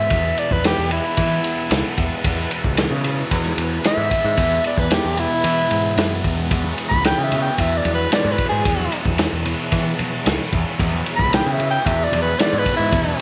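Light reverb and a small-room ambience give this excerpt a close, slightly lo-fi feel, fitting its kaleidoscopic, trippy psychedelic rock mood in a straight 4/4. A breathy soprano saxophone carries the melody as a solo from the first second, up front and intimate, its brilliant, whispered tone and soft attack trailed by a slapback echo. Beneath it, a thick fuzz guitar plays a low, double-tracked riff, distorted and coloured by a phaser, while an overdriven picked electric bass adds a warm, amped growl. A vintage drum kit sits forward with a punchy kick, a muffled, medium-tuned snare and ride cymbal, its top end rolled off. A mellow tonewheel organ holds dark, clean sustained chords through a rotary speaker with chorus vibrato, very quiet in the background, and soft-handed congas with a ringing, dry sound join at 6.6 s.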